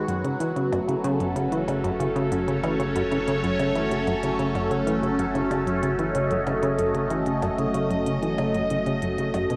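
Heard through wet reverb with the character of a home cassette recording, this short cut from a longer piece of ambient, sequencer-driven space music feels cosmic and mysterious in straight 4/4. A swirling, detuned sawtooth pad sits up front with phaser and chorus, holding sustained chords over a punchy, funky analog bass riff whose ring-modulated filter pluck decays into tape echo, and a deep, round sine sub bass underneath. From 0.1 seconds, clicky electronic hi-hats and percussion blips, also touched by tape echo, sit in the background.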